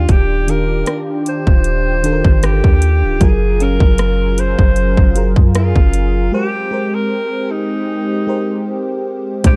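A breathy, distant alto saxophone sings a dreamy, romantic melody over a warbling FM electric piano with chorus, a smooth detuned analog pad and a deep, boomy 808-style bass, with a trap drum kit of hard-clipped kick, metallic hats and rim clicks joining a moment later. This contemporary R&B fragment, lightly swung, moves through lush major-ninth chords before a break arrives at 6.3 seconds. The production is dark and dry, with the drums and bass sitting up front.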